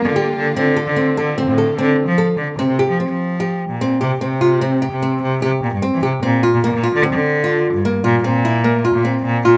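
A lightly reverberant sound frames this urgent, pensive contemporary chamber piece in 5/4 at 148 BPM, where a woody, fingerpicked nylon-string guitar plays arpeggios up front over a clear, bowed cello bass with vibrato, while a veiled, con sordino string section holds lush sustained chords in the background until 2.6 seconds, as the harmony moves from Gm7/D and Dm7 to C7sus4 and Bbadd9 in this excerpt cut from a longer piece.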